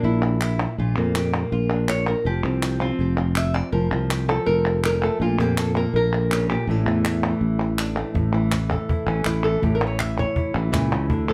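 A dark, fingerpicked flamenco guitar leads this short, fiery flamenco cut at 163 BPM, set up front beside a bright, growly fretless electric bass whose punchy, amped tone sustains underneath. Crisp, close palmas hand claps join at 0.2 seconds, and at 8.2 seconds the guitar takes a solo as a woody cajon with faint snares enters in the background, the harmony moving from Bb through Fsus2 and Asus4 to land on A. A moderate studio reverb gives the dramatic performance a modest sense of room.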